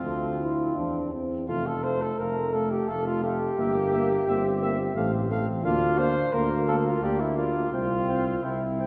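This classical brass quintet moves in a stately 3/4 at 86 BPM with a straight feel, set in F major and tuned slightly low to A4 = 438 Hz. All five players sound together throughout this 8.9-second cut from a longer piece, the trumpet carrying the melody between F4 and G5 with a warm, distant tone. Beneath it, a punchy flugelhorn with vibrato sits up front on the second line, while the tuba anchors the bass with a light vibrato and a smooth top, also close at hand. Further back, a mellow French horn and a brilliant, vintage-sounding trombone fill in the accompaniment. The harmony starts on F, passes through C7/G at 3.6 seconds, F/A and Bb/D, and arrives on C at 7.7 seconds, all bathed in a wet church reverb that gives the ensemble a roomy, resonant glow.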